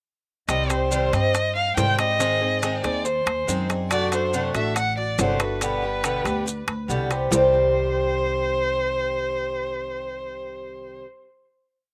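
Warm and nostalgic, this short, complete Cuban son and guajira piece sets an expressive bowed violin up front, spinning motif-based call phrases with vibrato and portamento over a boxy, strummed swing-style acoustic guitar with muted slaps and a slapback echo. A woody, thumpy upright bass plays a gut-string tumbao that anticipates the chords, while a very quiet Cuban tres adds a metallic, double-strung guajeo from 0.7 seconds. Grainy maracas and ringing metal-shell timbales drive the verse until 7.4 seconds, leaving the strings to hold a closing chord in a dry, open-air sound.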